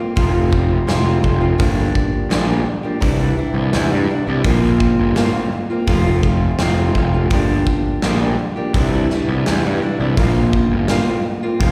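Dark and brooding, this 84 BPM quiet-loud alternative rock excerpt sets a fingerpicked steel-string acoustic guitar's warm arpeggios with slapback echo, entering at 0.0 seconds, over a growly, fuzz-laden picked electric bass and a punchy big rock drum kit of hi-hat, kick and snare from 0.2 seconds, all heard as a live gig through the venue's PA with recital hall reverb while the chords cycle through F, Gm7, Cadd9 and Bbadd9.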